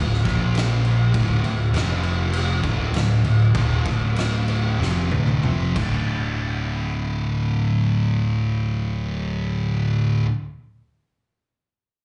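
A growly, punchy overdriven bass anchors this sludgy, heavy stoner and doom metal excerpt in D phrygian at 90-101 BPM, with two dark fuzz guitars grinding a riff (one up front, the other in the background with slapback echo) while an oversized low-tuned drum kit with a boomy kick and fat snare slows down from 1.1 seconds, plays a fill, and stops at 5.9 seconds, all heard through a live club PA with a rolled-off top.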